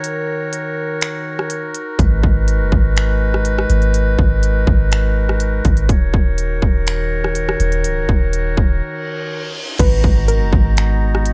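Hazy and melancholic, this atmospheric cloud-rap excerpt moves at 123 BPM with a half-time feel in G# minor. A distant, roomy woodwind section holds sustained classical-style chords throughout, pumping under sidechain, as the harmony shifts between D#m7 and G#m7. The electronic trap kit sits up front with a hard-clipped kick, crisp hi-hats, finger snaps, rim clicks and crash cymbal, all pushed through overdrive, while a deep, round 808-style bass enters at 2.0 seconds with a dark, decaying sine tone. After a break, a reverse cymbal runs from 9.0 seconds into an impact at 9.8 seconds, where a soft, wave-folded pluck with chorus and delay adds a brief melodic figure. The mix is dry, with little reverb.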